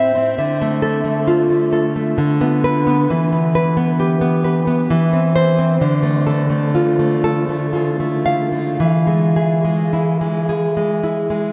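A lone nylon-string guitar opens this brief fragment of a longer romantic piece for solo classical guitar, fingerpicked with a dark, full-bodied tone that sits up front. The mood is melancholic yet passionate, moving in a slow 3/4 at roughly 53-68 BPM with a flexible rubato feel, tuned slightly below standard pitch at A4 = 438 Hz. The harmony begins on Dm at 0.4 seconds, passes through Bm/D, Em and C/E, returns to Dm, and arrives on E at 8.8 seconds. The guitar spans from A2 up to F5, its deep classical voice carried by a touch of delay. A huge ambient reverb with a 7.6-second decay soaks the whole mix, giving it a dreamy, cavernous atmosphere across its 11.5 seconds.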